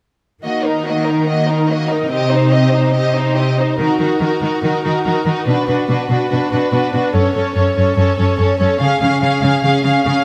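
An excerpt of a swashbuckling, determined heroic adventure film score opens at 0.4 s with a lush symphonic violin section carrying the expressive, portamento-laden melody up front, a studio violin section adding an even second line, violas filling in rich accompaniment, and a rich cello section anchoring the bass, all in a moderate scoring-stage reverb as the music builds from 3.8 s through shifting minor chords to a closing major chord at 8.8 s.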